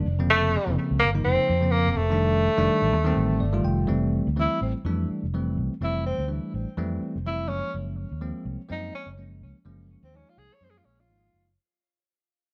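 A bell-like, clean tine electric piano and a round, amped fingered electric bass open this soaring, bright jazz excerpt in F mixolydian at 125 BPM, with a lightly swung 4/4 feel and moderate large-studio reverb. A vintage-toned tenor saxophone with soft attack and vibrato carries the melody up front over chords moving from Bbmadd9/F to F13, and the electric piano adds a fill just before 3.9 seconds. From there the saxophone takes a solo over Fmaj9 and Gbmaj9 as the music fades out through 11.6 seconds.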